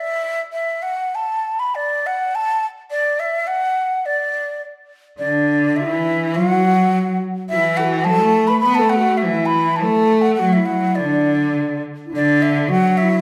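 Pastoral and graceful, this short excerpt from a longer Chinese traditional chamber ensemble piece moves with a rubato feel around 104 BPM in 2/4, set in a D gong mode. A breathy, mellow metal flute carries the melody from the start, sitting up front with vibrato and tongued notes, its hollow tone heard from a slight distance. At 5.2 seconds a low bamboo xiao and a bowed cello enter together as second lines beneath it, the end-blown xiao reedy and airy with a bright straight tone and soft attack. The solo cello plays smoothly and evenly with vibrato, clear and up front yet slightly distant. A wet recital hall reverb surrounds the trio, giving the graceful lines a gentle sense of space until the close at 13.2 seconds.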